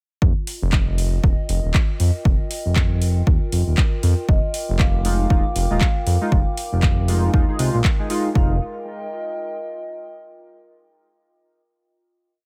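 A hypnotic, late-night deep house piece at 118 BPM in F dorian opens with an overdriven, punchy four-on-the-floor kick, a smooth sawtooth synth bass riff pumping against it, and a warbling, lo-fi tape-like pad drifting through dark, slowly shifting chords, soon joined by a house kit of metallic hats and claps. A vibraphone with soft mallets floats a free, ringing melody through analog delay from 4.3 s, and a glossy chorused polysynth adds close-voiced rhythmic chord stabs with a cassette tint from 5.0 s. After the groove over Fm7, the pad carries a final chord, outlasting the other parts until 10.3 s, set in an echo-heavy digital ambience.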